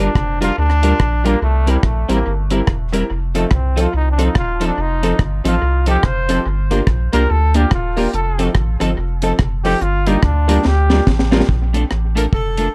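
A brilliant, vintage-toned trombone opens this upbeat, joyful ska excerpt with a solo carrying the melody at 143 BPM, its light vibrato trailed by dub echo over a swung 4/4 groove. Beneath it, a clean, picked electric guitar with subtle chorus plays accompaniment, while a clear upright piano adds woody stabs with audible action noise and long sustain. A round, sine-like sub bass sits up front with a fast attack and sustained notes, and a dry reggae drum kit with a high-tuned snare, tight kick, rim click and hi-hat carries its own dub echo. A drum fill at 10.7 seconds leads out of the trombone solo, and the harmony moves from Gm7 through C7 and F7 before settling on Bbmaj7 at 11.5 seconds. A punchy horn section enters at 12.2 seconds with a brief ensemble phrase, all within a dark, lightly reverberant production.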